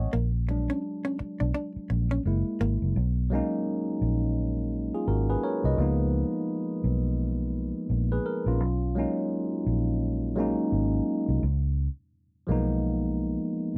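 Soulful and relaxed, this dry, close 1970s-style R&B and neo-soul fragment at 85 BPM with a swung sixteenth feel in B lydian opens with a solo from a barky, phaser-tinged tine electric piano, a dark hollow-body jazz guitar adding a brief picked second line until 2.8 seconds, while a round, foam-muted fingered electric bass sits punchy and up front beneath the Bmaj13 and C#13 chords until 13.4 seconds, the electric piano carrying on to the cut at 13.8 seconds.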